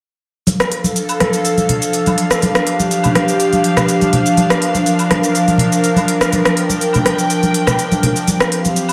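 Progressive house at 123 BPM in D minor, this bittersweet, expansive fragment of a longer piece sets an airy, breathy pad of detuned, warbling sustained chords with chorus and vintage sampler grit up front, moving from Dm to Bb and arriving on Csus4 at 8.3 seconds. With it, a crisp, overdriven big-room electronic kit of hi-hat, rim click and shaker, re-recorded in a large room, sits forward alongside bright, saturated congas and woodblock played with soft hands. A moderate digital room reverb gives the whole a spacious sheen.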